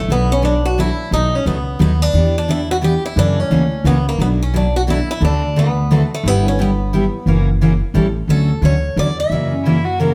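Jazz manouche in a swinging, playful 3/4, this short cut has a bright, boxy picked swing guitar carrying the melody over a woody, growly pizzicato upright bass and a full-bodied jumbo steel-string guitar with audible finger squeak, set back in a wet studio reverb, before a close, expressive bowed violin with vibrato and portamento slips in at 9.5 seconds.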